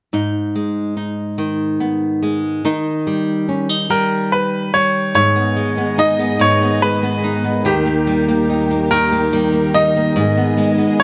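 A brilliant, polished grand piano carries the melody from 3.9 seconds, its short-sustained notes sitting up front over a fingerpicked flamenco guitar whose warm acoustic accompaniment opens this dramatic, melancholic pop fragment in a straight 6/8. At 5.1 seconds a dark, woody studio string section enters with lush bowed chords, vibrato and a smooth top, placed a little behind the guitar and piano. A moderate concert hall reverb surrounds the parts as the harmony moves between minor and major chords, and the recording is cut from a longer piece.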